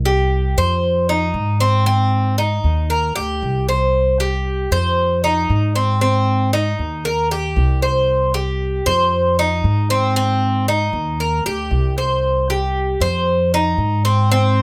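Danceable and warm, this 116 BPM excerpt of Cuban son and guajira in straight 4/4 sets a woody, dark pizzicato upright bass against a bright, metallic Cuban tres picking arpeggios on its doubled strings, both captured up front with close, detailed microphones and little reverb as the harmony cycles through C5, F5, Ab and Eb from 0.0 to 14.6 seconds.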